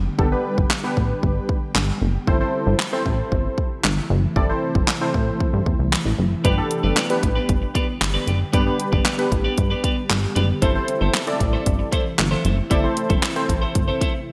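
This carefree, summery dance-pop excerpt opens on an ethereal, airy pad holding sustained chords in the background, joined at once by a plucky analog bass with a punchy, funky sawtooth bite and filter pluck. By 0.2 seconds a punchy pop drum kit of fat snare, kick, hi-hat and handclaps, all set in gated reverb, drives a straight 4/4 at 115 BPM, while round, detuned analog keys with chorus fill in the accompaniment. The harmony moves between G and Am, with the pad's phaser and ensemble chorus and the sidechain pumping on pad, bass and keys giving the groove its breathing lift. At 6.4 seconds a bright, twangy twelve-string electric guitar enters with a clean, picked riff lightly touched by chorus. The bright 1980s-style digital production sits in light reverb, keeping the drums, bass and keys up front.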